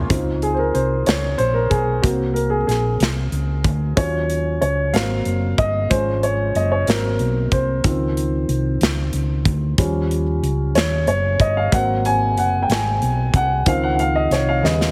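Slow, uplifting gospel in 6/8 at 62 BPM in Db major, this hopeful passage is cut from a longer piece and has a woody, intimate upright piano taking a solo over chords moving from Dbmaj7 through Ab7 and Ebm7. A dark, round hollow-body electric bass and an airy, polished studio kit with a punchy kick, hi-hat and medium-tuned snare sit up front beside it, with a drum fill at 14.6 seconds. Light reverb adds studio ambience, and the whole mix carries a heavily compressed radio sound, with the piano's action noise audible.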